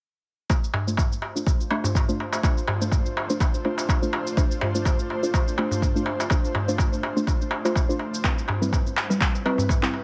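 Afro house at 124 BPM in D dorian with a light 16th-note swing, this hypnotic, spiritual excerpt from a longer piece moves from Dm7 to Cmaj7 at 8.2 seconds. A tape-warm kick sits up front beside produced shaker and handclaps, while a crisp, metal-shelled darbuka played with hard hands adds a deep, vintage, band-limited acoustic bite. Dark, detuned chord stabs with chorus, digital delay and sidechain pumping sit alongside an ethereal, airy pad that enters at 1.3 seconds, its slow attack, tremolo and ensemble chorus washing through a digital ambience.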